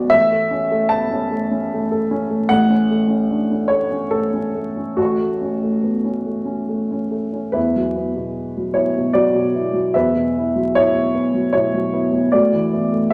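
A dark, woody upright piano plays alone and sits up front for the whole 13.1 seconds of this short neoclassical minimalist piece, which is cut from a longer work. The mood is peaceful and hopeful, moving in an unhurried three-beat metre with a loose, rubato feel. The harmony rests on A and F#m/A before shifting at 7.6 seconds into a second section built on Esus2, then settling on Asus2 near the close. The piano covers a broad span, from deep bass notes up to a high register. A moderate large-studio reverb gives the instrument a sense of space, while a vinyl crackle adds an aged, intimate texture.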